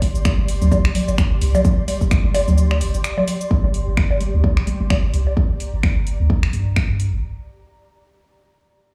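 Heard as if through a big sound system in a bare room with large studio reverb, this clinical, sparse fragment of swung minimal techno sets an up-front punchy kick over a deep, sidechain-pumped sine sub bass, with metallic hats, finger snaps and shaker from an electronic kit, tape-warm bongos and congas trailed by digital delay, and an ethereal, detuned pad with ensemble chorus; the kick drops out at 2.6 seconds, and from 3.5 seconds the pad fades as a filter sweeps the sub bass.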